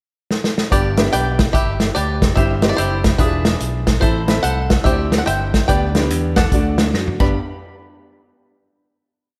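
A swung, driving two-beat praise groove opens this short, reverent and uplifting uptempo gospel piece, with a punchy, up-front acoustic country drum kit entering at 0.3 seconds with a fill before the band arrives at 0.7 seconds. A twangy, fingerpicked bluegrass banjo carries the melody in echoing call phrases, while a growly fingered electric bass walks and runs with slides and chromatic approach notes. A boxy concert grand piano, its action noise audible, pushes drop-2 chord voicings with grace notes until the parts stop at 7.3 seconds and the music closes on a final hit inside a lush hall reverb that gives it a big arena sound.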